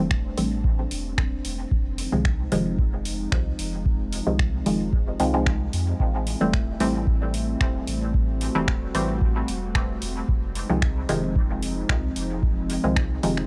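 Dub techno with a deep, cavernous mood, this short cut from a longer piece moves in a straight 4/4 pulse, cycling between Am7 and Fm7 chords. A muted, sawtooth-based chord stab sits up front with a filter pluck and fast, decaying attack, colored by chorus, phaser and dub echo. Beneath it, a warbling, nostalgic pad of detuned sawtooth and triangle tones holds sustained chords with a slow attack and long release, its lo-fi, vintage character softened by chorus and built-in reverb and set pumping by sidechain. A round sine sub bass anchors the low end, with transformer saturation and the same sidechain pumping. The drums pair a deep, tape-warm electronic kick with a booming analog drum machine supplying finger snaps and metallic hi-hats. The overall sound is dry and gritty, with little reverb, like a hardware recording.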